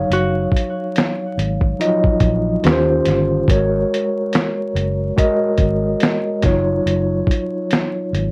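A light reverb and a layer of vinyl crackle give this short lo-fi hip hop fragment, cut from a longer piece, a hazy, reflective air, with a gentle swing in its four-beat groove. A dark, picked hollow-body archtop guitar opens with a brief melody, low-pass filtered and trailed by tape echo, and it is gone by 1.3 seconds. A mellow, clean tine electric piano sits up front for the whole fragment, its chords filtered and coloured by cassette tape as the harmony moves from Ebm7/Gb through Eb13 and Ab9sus4 before returning to Ebm7/Gb. Beneath it, a vintage fingered electric bass with a foam-muted, round tone holds the low end. The sampler-style drum kit enters at 0.1 seconds, up front with a compressed, pitched-down and muffled sound, a thumpy kick, a medium-tuned snare and hi-hat, all re-recorded in a small room.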